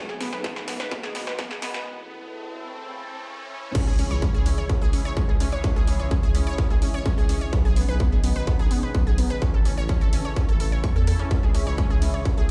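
A distorted, layered electronic kick sits up front in this dark, cinematic melodic techno passage, cut from a longer track and entering at 0.4 seconds. It opens on a build-up where a punchy analog drum machine plays a fill of snare, hi-hats, ride and crash, while a background riser climbs and filter sweeps move across a bright, detuned unison pluck arpeggio and a resonant sawtooth pad of sustained chords. The round, deep analog bass, wave-folded and evolving, anchors the low end from the very start. After a short break, the drop lands at 3.8 seconds with an impact, as pluck, pad and bass all pump against the sidechain. A very quiet granular cloud pad adds a blurred, drifting haze above, and the pluck trails digital delay while the pad carries chorus. The chords cycle from G#m/B to A to C#m, and the whole mix sits in a large, reverberant space, as if played through a big sound system in a bare room.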